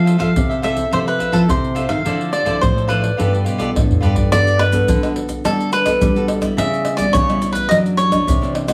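A straight 4/4 samba-and-choro groove opens the excerpt, carried by pandeiro, a deep surdo, tamborim and tube shaker played with soft hands and sitting close, dry and up front. A crisp, picked cavaquinho leads the playful, sunny melody over a second cavaquinho picking the accompaniment, which drops out at 4.3 s as the music moves into its second section. Underneath, a nylon-string guitar in classical style fingerpicks chords with fresh strings and an audible finger squeak, while another thumb-plucked nylon-string guitar holds the bass line. A short drum fill at 3.8 s leads into the new section, and the harmony moves through colorful chords from Fmaj7, Dm9 and G9 to Gmaj9, C#m7b5 and F#7b13. Moderate studio reverb and a small room ambience give the acoustic ensemble an intimate, lively sound.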